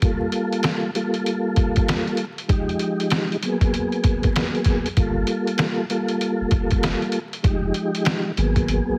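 A pitched-down, sampler-style drum kit sits up front in this reflective, gritty boom-bap hip hop clip cut from a longer piece, its thumpy kick, medium-tuned snare and hi-hat sounding compressed and grimy at 97 BPM with a 63% swing on the sixteenths. Alongside it, a soft, flute-like tonewheel organ carries the chords, also up front, its clean tone colored by chorus vibrato, a fast rotary speaker, cassette tape character and filtering that trims both its lows and highs. For the first 5.0 seconds the drums and organ play as a break over a cycle of Gm9, Fm9 and Abm9. At 5.0 seconds a deep, thick, saturated sine sub bass enters, low and sustained, and the chord cycle repeats from Gm9. The whole mix has light reverb, a heavily compressed, radio-like sound and a layer of vinyl crackle.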